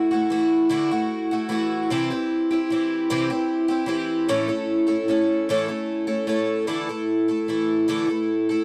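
A picked twelve-string acoustic guitar plays alone from the start, its bright, octave-doubled shimmer sitting up front with a boxy parlour character, moving from Dadd9 through C and A. This short rock passage cut from a longer piece has a hopeful, open-road mood at a slow 50 BPM in a straight 6/8, tuned to A4 = 439 Hz. At 6.7 s it settles onto Dsus2. The close, dry 1970s-style studio sound carries only a light touch of reverb.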